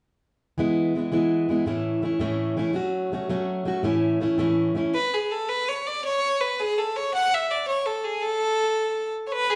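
A fingerpicked, plugged-in steel-string acoustic guitar opens this short cut from a longer Celtic folk piece, moving through E, A, F#m and A at a rollicking 110 BPM in a straight 6/8. The guitar sits up front with a bright, concert-ready acoustic tone, spanning A2 to F#4. At 4.9 seconds the guitar stops and the chords give way as a single bowed fiddle takes over the melody between G#4 and F#5. The fiddle is intense and somewhat boxy, carrying a light vibrato and a touch of plate reverb, and it stays close and forward. The whole recording has a cheerful lift, placed a little back in a studio room with a short, wet reverb.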